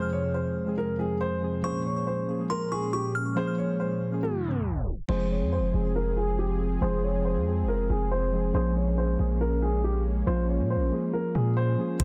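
A half-time drill pulse at 139 BPM sets a cold, dark hip hop mood, as a dark, boxy concert grand with audible action noise carries the melody over muted, felt-like synth keys and a smooth, detuned analog pad on Fm and Bbm7; a delicate, warbling FM tine bell adds a tinkling second line from 1.6 s, and a reverse cymbal and tape stop lead into a deep, sine-toned 808 bass at 5.1 s under a filter sweep, before a knocking drill kit with crisp hats arrives at 12.0 s.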